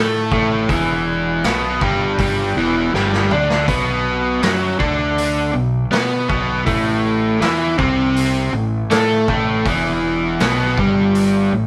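A dark, overdriven electric guitar sits up front with a double-tracked, compressed riff, anchoring this swaggering, gritty blues rock and southern rock power-trio excerpt at 80 BPM in a straight 4/4, moving through power chords on A, E and B before landing on a Gsus2 near the end. Beneath it, a fuzz-drenched fingered electric bass growls with a bright, overdriven edge, while a vintage acoustic drum kit with a saturated, rolled-off top enters at 0.3 seconds on hi-hat, tight kick, medium-tuned snare and toms, including a fill from 2.9 to 3.7 seconds. The band plays live together in one room with moderate studio reverb, giving the short cut from a longer piece an immediate, raw feel.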